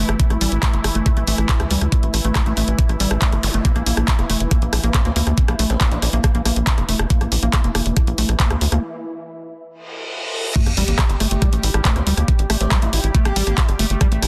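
A knocking, tape-warm electronic kick sits up front in this driving, hypnotic psychedelic trance excerpt, joined by a tight, punchy sequencer bass with a dark filter pluck and a drum kit of bright hats, handclaps, rim clicks and crash. Above them a squelchy, resonant acid bass riff runs under a filter sweep with chorus and dub echo, while a bubbling, detuned sawtooth texture holds sustained chords and a saturated formant-sweep wobble line surfaces in the background around 4.9 seconds. A break from 8.8 seconds brings a reverse cymbal, and the drop lands at 10.6 seconds with an impact as sound effects including a sub drop carry on until 12.3 seconds, all in a dense, heavily limited digital mix carrying lossy artefacts.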